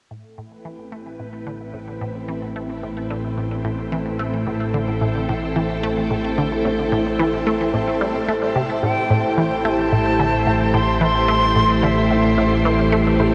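In a straight 4/4 pulse, this cosmic, expansive ambient passage, cut from a longer piece, fades in a lush, phased string machine holding an Am7 chord, a squelchy resonant blip-pluck riff with tape echo, a detuned analog drone bass from 1.3 s, and a mellow pulsing gated texture in the background, before an airy, close-miked concert flute takes the melody at 8.8 s, set in a long shimmer reverb with the warble of worn cassette tape.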